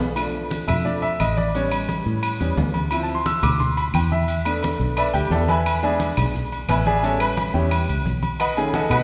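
A drum fill opens this fiery, passionate salsa excerpt at 175 BPM in 4/4, with clear baby grand piano, fingered electric bass, congas and maracas sounding from the start. At 0.2 seconds the ringing metal-shell agogo bells and timbales join with woody claves, and the up-front piano takes a solo over a progression that moves from Bm7b5 through A7, Dm9, E7sus4, E7 and A7 before closing on B7. Beneath it, the dark, round, foam-muted bass stays low, while bright, low-tuned congas struck with hard hands sit close and dry in the background beside the claves. Grainy, mellow, compressed and saturated maracas add a soft shimmer. The agogo bells, timbales and the piano's solo bloom in a lush, hall-like reverb that gives the passage a grand, resonant sense of space.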